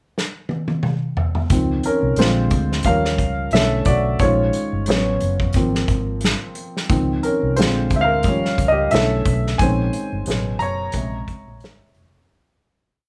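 This R&B and neo-soul piece has a smooth, late-night mood in 4/4 with a gentle sixteenth-note swing. An acoustic drum kit opens alone with a fill played with bundle sticks, its medium-tuned snare, tight kick, hi-hat and toms sitting up front in a small room. At 1.5 seconds a baby grand piano begins a solo in a present, up-front tone, with push chord rhythms in rootless voicings over changes that start on Dbmaj7 and move through Bb7, Eb9 and Bm11. Meanwhile the drums settle into a laid-back beat with ghost notes. A vintage fingered electric bass enters at the same moment, dark, round and foam-muted through an amp, playing a relaxed line with slides. Light reverb adds small-room ambience, and the piece fades out from 9.6 seconds to its close at 12.3 seconds.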